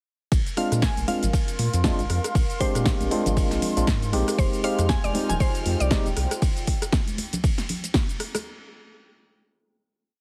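A deep, late-night deep house piece in F dorian at 118 BPM, with a 16th-note swing giving the groove its loose sway. An overdriven electronic kick holds a four-on-the-floor pulse up front, joined by a programmed kit of metallic hats, ride, rim, shaker and a punchy snare on the backbeat, while high-tuned congas played with soft hands sit close and dry in the background from 1.0 s. A round, dark analog bass carries a funky syncopated line with sidechain pumping, under clean, amp-coloured electric piano stabs in rootless voicings touched with tape echo. A crystalline wavetable pluck offers short answering phrases through chorus and echo, and over a warbling, lo-fi tape-like pad of slowly shifting chords, the harmony moves from Bb9 to Fm9 at 4.4 s. There a woody, mallet-like FM pluck takes up a repeating riff and a bowed chamber violin section holds a single high F6 in the background, while a silky string machine follows at 4.6 s with very quiet sustained chords. 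The whole mix has light digital ambience and a heavily compressed, radio-like sheen.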